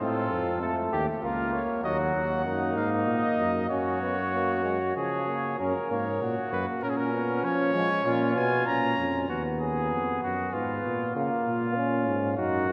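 A clear flugelhorn with a vintage character sits up front, carrying the second line of this driving, serious classical canzona for brass ensemble in 3/4 with a straight feel. Above it, a warm trumpet with light vibrato sings the melody, then drops out at 9.3 seconds while the other parts carry on to the close at 12.7 seconds. A trombone, also touched with light vibrato, supplies the accompaniment from a distant, roomy position. Beneath it, a mellow bass trombone anchors the bass up front. The imitative writing moves through a return of its opening material at 9.3 seconds, and the whole passage is bathed in a wet cathedral reverb, cut from a longer piece.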